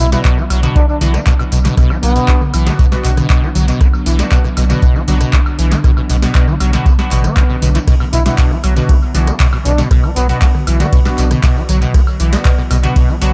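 A breathy, bucket-muted trumpet with vibrato sings short, veiled phrases through dub echo at 0.0 and again at 8.1 seconds, floating over a driving, gritty acid house groove at 118 BPM in B minor, held on a Bm chord. A squelchy, resonant sawtooth acid bass riff with filter sweeps and a round sine sub bass pump under the sidechain, while a deep, up-front electronic kick and a booming analog drum machine supply crisp snare, metallic hats, handclaps, ride, rim click, tambourine, toms and woodblock. In the background, a warbling, lo-fi tape-like pad holds dark sustained chords, a nasal band-passed chord stab flickers through a phaser, and a brief electronic swell sounds at 7.1 seconds in this dry, echo-heavy mix cut from a longer piece.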